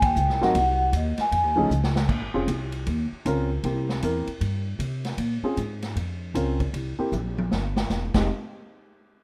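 A mellow, ringing vibraphone with fast motor vibrato opens this moody, cool small-group swing excerpt at 155 BPM on a band accent together with bass and drums, playing the melody until 1.7 s, while a woody, thumpy pizzicato upright bass sits up front, an intimate baby grand piano with audible action noise enters just after to accompany over minor harmony, and a distant, roomy drum kit with dark cymbals and a punchy kick adds fills, one leading into a new section at 2.1 s, all in a rough home-demo mix with light reverb and small-room ambience.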